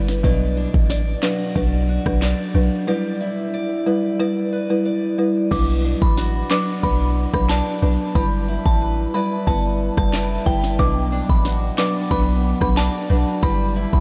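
Dancehall with a tough, sultry mood, this excerpt sets an up-front, woody marimba pumping against a deep, boomy 808-style bass while a bright, boxy picked acoustic guitar spins arpeggios through subtle chorus and analog delay, over a produced afro-pop kit of deep kick, sharp snare, crisp hats, rim click, handclaps and crash. At 5.5 seconds a glassy, crystalline synth bell enters with a warbling vintage melody, colored by chorus, phaser and delay. The whole mix is dreamy and soaked in huge ambient reverb as the harmony rocks between B minor and G6.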